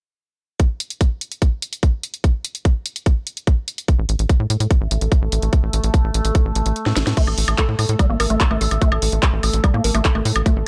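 A tight, layered electronic kick sits up front in this intense, hypnotic slice of psychedelic trance, driving a straight 4/4 pulse at 146 BPM alongside a drum-and-bass-style kit of cracking snare, hi-hat, handclaps, woodblock and crash cymbal. At 4.0 seconds a punchy sequencer bass joins, its sawtooth and square-wave tones shaped by a filter pluck with a fast attack and quick decay. Soon after, an overtone-sweeping drone fills in sustained chords, its resonant sawtooth and sine layers swelling in with a slow attack through chorus, phaser and built-in reverb while sidechain pumping makes it breathe with the beat. The kick drops out at 6.8 seconds for a short drum fill, and at 7.2 seconds the music settles onto an A5 chord as a woody, wave-folded pluck enters with a dark, percussive riff roughened by vintage 12-bit sampler grit and carried on chorus, delay and sidechain pumping. The mix is dry, with little reverb, and the passage is cut from a longer piece.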